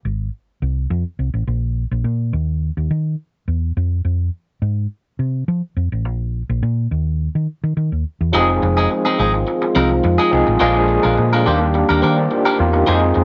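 A straight 4/4 disco groove at 105 BPM in F dorian sets a sultry, danceable mood, opening with a round, punchy hollow-body fingered electric bass playing alone until 8.3 seconds, as Fm alternates with chordless N.C. passages. At that point a twangy, compressed clean electric guitar, a barky, gritty overdriven tine electric piano with medium tremolo through a combo amp, and a dark French horn section holding tight sustained chords with light vibrato in the background all enter, moving through Fm7, Bb7 and Ebmaj7. The sound is dry and close, with a dull top end, and the clip is cut from a longer piece.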